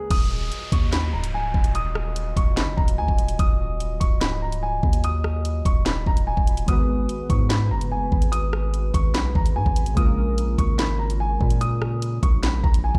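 The track sounds as if it were played through a big sound system in a bare room, washed in a large studio reverb. It is an ominous drill cut in Eb minor at 146 BPM with a half-time feel, moving from Ebmadd9 to Abm7 and Bbm7. An up-front electronic drum kit drives it with a knocking kick, a sharp snare, bright hi-hats, handclaps, rim clicks and crash cymbal. A deep, sine-like 808-style bass hits with a fast attack and long decay. Above them, a shadowy concert grand piano carries the high melody through a low-pass filter and digital delay, while a tight French horn section holds mellow, classical-style chords with a light vibrato. An electronic downlifter falls away by 3.4 seconds, and warbling, detuned lo-fi synth keys with chorus and ring modulation add nostalgic accompaniment from 6.6 seconds in this excerpt of a longer piece.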